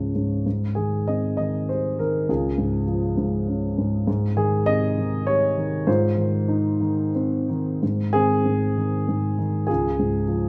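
A dark concert grand piano, mellow and up front with deep bass, plays a lyrical, hopeful classical solo with rubato in 3/4 time, its chords ringing into a recital hall's lush reverb and shifting into a new section at 7.8 seconds before this brief cut from a longer piece ends at 10.5 seconds.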